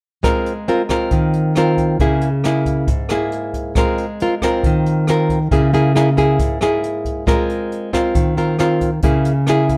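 A straight bossa nova groove in 4/4 comes from a jazz brush drum kit, with hi-hat, rim click and a boomy kick sitting back in a small, natural-sounding room. Up front, a fingerpicked nylon-string guitar in classical style lays down warm accompaniment, swaying between two lush chords, a major six-nine and a minor sixth, every couple of seconds. The mood is romantic and sunny, wrapped in dark production and light reverb, in a brief passage cut from a longer piece that runs to about 9.8 seconds.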